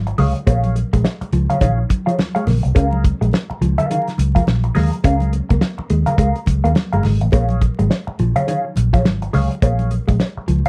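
Funk in Bb minor at 105 BPM with swung sixteenths, this cool, sly excerpt moves from Bbm7 to Db6 at 2.8 seconds and back at 7.3 seconds. A dark, round, foam-muted fingered bass and a small-room soul kit with a fat snare, tight kick, hi-hat and rolled-off top sit up front. Behind them are saturated, hard-hand congas, a compressed clean electric guitar through wah, and a mellow electric guitar riff colored by spring reverb. The sound is a dry, close 1970s-style studio recording dusted with vinyl crackle.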